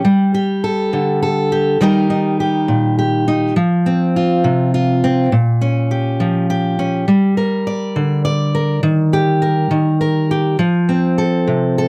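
The recording has a dark, warm production with a light reverb, placing a single guitar up front in an auditorium-like space. This brief folk piece, cut from a longer work, moves at 68 beats per minute in dotted quarters, with a straight 6/8 feel in F mixolydian and tuning set to A4 = 439 Hz. A fingerpicked steel-string acoustic guitar plays solo for the full 11.9 seconds, ranging from Bb2 up to D5. The harmony runs through Gsus2, Eb, F5, Bbm6, Gm and Eb before settling on F at 10.6 seconds. The mood is hopeful and uplifting, carried entirely by the voice of the lone guitar.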